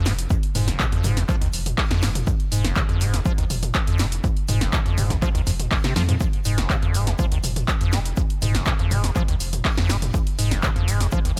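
A raw, driving acid house clip set in a small room, led by a squelchy, resonant square-wave acid riff up front, with overdrive, analog chorus, cassette tape colour, digital delay and a filter sweep on its fast, decaying notes. Beneath it sits a deep, thick triangle sub bass with tube saturation and sidechain pumping, while an overdriven electronic kick drives the beat from 0.3 seconds. A punchy, tape-tinged analog drum machine adds handclaps, hi-hat, shaker, snare and toms, and a dark, smooth acoustic jazz kit of hi-hat, shaker and snare murmurs very quietly in the background.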